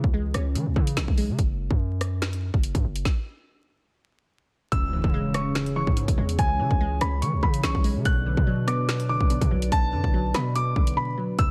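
A hard-hitting, punchy 808-style bass with a sine body and noise layer drives this tense, ominous half-time drill excerpt at 144 BPM in C# phrygian, together with an up-front electronic drum kit with a hard-clipped kick, woody soft-clipped snare, snaps, rim clicks and hats, a glassy detuned wavetable pluck with chorus that stops at 1.4 seconds and returns at 4.7 seconds alongside a mellow, dark grand piano melody, a deep, moody analog pad with ring modulation and slow attack, and a background electronic impact, all in a dry, dense, heavily limited master with vinyl crackle.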